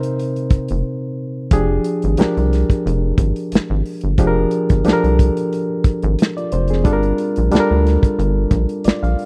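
A dry, close 1970s-style studio sound with small room ambience frames this short, sultry neo-soul R&B excerpt in F dorian at 90 BPM with a light 16th-note swing, where a reedy, lightly overdriven electric piano moves through Cm7, Fm69 and Gm7 over an acoustic soul kit with a tight kick and medium-tuned snare, a rubbery, hollow square-wave bass enters at 0.5 seconds, and a break falls between 0.8 and 1.5 seconds.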